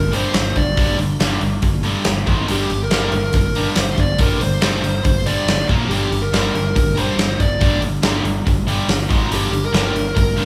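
Hard rock in G minor at 141 BPM, this aggressive, driving excerpt has a dark, high-gain lead guitar carrying the melody over two picked riff guitars, one overdriven with spring reverb and one tightly distorted, both sitting in the background. A growly, direct electric bass holds the low end while a big acoustic drum kit, up front with a fat snare, punchy kick and rolled-off top, drives hi-hat, kick and snare from 0.1 s. Power chords on G, Ab and Bb alternate with G minor, and the whole band plays live in one large studio room with moderate reverb.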